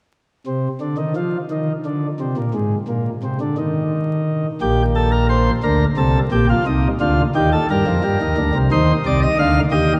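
Steeped in a long cathedral reverb and overlaid with vinyl crackle, this solemn yet driving snippet of a baroque-style three-part fugue in C minor moves at 58 BPM in 6/8, with a lone chamber organ playing a full principal chorus with audible chiff, sitting up front and spanning Bb1 to F5 from 0.5 to 9.9 seconds as its harmony settles through Bb, Cm and Gm before resting on Cm.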